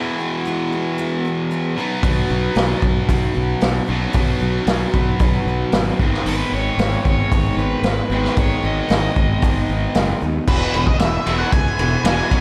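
Swaggering and brooding, this classic rock passage, cut from a longer piece, moves at 114 BPM in a straight 4/4, built around chords of E, Badd9 and G#m. A bright, double-tracked distorted electric guitar drives the riff up front from the opening, while a full-bodied jumbo steel-string acoustic, picked with fresh strings and touched by slapback echo, sits in the background. At 2.0 seconds a round, fuzzed fingered bass and a punchy vintage kit arrive, the drums mid-forward with dark cymbals, a medium-tuned snare and a rolled-off top across kick, snare, hi-hat, ride and crash. A crunchy overdriven guitar adds a second line with slapback echo from 6.3 to 10.2 seconds. At 10.5 seconds the music returns to E as a dark octave-fuzz lead guitar takes the melody and a very quiet tonewheel organ, lightly overdriven through a slow rotary speaker, holds sustained chords. Moderate scoring stage reverb and small room ambience give the whole a big arena sound.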